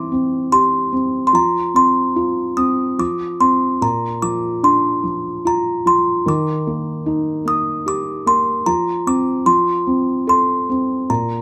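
A moderate studio reverb gives this short cut from a longer lullaby a close, gently rounded space, with both instruments sitting up front. A delicate, tinkling music box carries the tender, innocent melody high above a felt-muted upright piano, whose dark, mellow accompaniment has an intimate, thick-felt softness. The children's piece moves in an unhurried 3/4 at 74 BPM with a rubato feel, tuned to A4 = 438 Hz, and both parts play throughout its 11.4 seconds.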